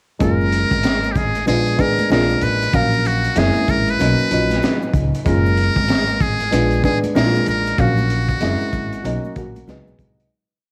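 At 0.2 seconds a smooth, warm jazz-hop groove arrives all at once: a crunchy, saturated breakbeat kit with a tight kick, a high-tuned snare and swung sixteenth-note hats sets a laid-back hip hop pocket with a rolled-off top. A dark, mellow, slightly detuned upright piano pushes rootless jazz chords dressed with grace notes, while a woody pizzicato upright bass plays a syncopated line full of muted ghost notes and chromatic approach notes. Out front, a trumpet with a metal mute plays motif-based call phrases with vibrato, its tone buzzy, thin and brilliant. Very quiet egg shaker and loose congas add close, dry, soft-handed texture underneath. The piano, drums and trumpet carry a gritty cassette-tape colour within a small-room home recording, and the piece begins to fade out at 7.8 seconds, with the trumpet stopping at 9.7 seconds.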